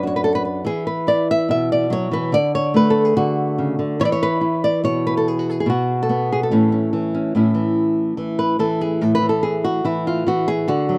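Flamenco with a fiery, proud character, this short passage is cut from a longer piece and set in a straight 4/4. A single fingerpicked flamenco guitar carries everything, its acoustic tone dark and placed up front, ranging from F#2 to E5 and touched with a slapback echo. The harmony moves through Bm, E5 and D, returns to E5, steps briefly outside any chord, then lands on A. At 7.3 seconds the music shifts into a new section where the nylon-string guitar takes a solo turn through to the close at 11.0 seconds. Recorded outdoors with little reverb and a dry presence, the sound carries a faint mains hum beneath the playing.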